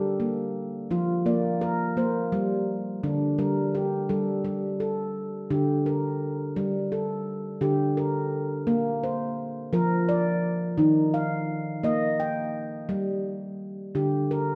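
A wet echo chamber reverb surrounds this short, meditative passage, lifted from a longer piece, giving each note a tail that lingers about 1.8 seconds. A solo handpan sits up front throughout, its ringing stainless-steel tone struck with the fingertips and carrying a boxy, small-room colour beneath the reverb. The gentle world-style playing moves in a slow 6/8, spanning from D3 up to G5. The harmony drifts from Bb to G minor in the opening phrase. A second phrase begins at 4.4 seconds and passes through Bb and Eb before settling back on G minor near the close.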